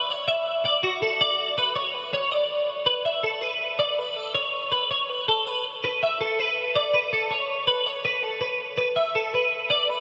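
A dreamy haze of reverb fills this short rock passage, with a huge ambient wash that lingers for 5.3 seconds and soaks the whole mix. A single twelve-string electric guitar carries the music alone from 0.0 to 10.0 s. Its tone is bright, clean and twangy, picked and compressed, and it sits up front even amid all that ambience. An ensemble chorus and a diffuse ambient delay thicken its shimmer as it moves between F#4 and E5 at a brisk 162 BPM in straight 4/4. The mood is intricate and playful, and the music shifts into a new section at 2.7 s before the cut from a longer piece ends.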